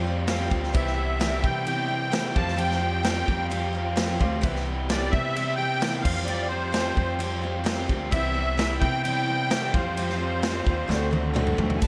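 A big arena sound bathed in lush hall reverb frames this nostalgic folk rock and heartland rock excerpt at 130 BPM, where a reedy musette accordion with slapback echo and digital delay carries the melody from 0.8 s over a punchy, bright-cymbaled country drum kit, a woody pizzicato upright bass, a shimmering octave-doubled twelve-string acoustic guitar and a lo-fi overdriven garage guitar riff in the background, a very quiet tonewheel organ sustaining dark, round chords through a slow rotary speaker, and a clear grand piano that adds fills at 3.5 s and 7.4 s as Fsus2 and Cmaj7 alternate before a drum fill and a D7 arrive at 10.9 s.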